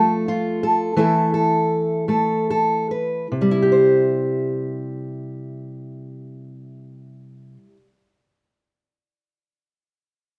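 In an unhurried 3/4 that drifts between 69 and 87 BPM and slows through its opening 3.3 seconds, this tender, intimate folk fragment in C major is carried by a single fingerpicked steel-string acoustic guitar. Its tone is dark and woody with the character of old strings, sitting up front, with a light touch of reverb around it. The chords move from F to Esus4 and settle on C at 3.3 seconds, with the guitar playing until 8.0 seconds.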